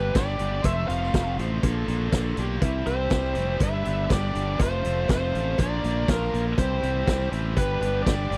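A straight, driving 4/4 at 122 BPM in C mixolydian sets up a confident classic rock cut, where a biting, overdriven lead guitar with slapback echo carries the melody up front over a dark octave-fuzz second line, two picked rhythm guitars (one distorted and compressed in the background, one overdriven) grinding out the riff, a punchy, bright fingered bass, a gritty vintage drum kit with a rolled-off top, a very quiet close cowbell, and a brief overdriven small-amp guitar line from 1.4 to 2.9 s, all in a dry, close 1970s-style studio sound.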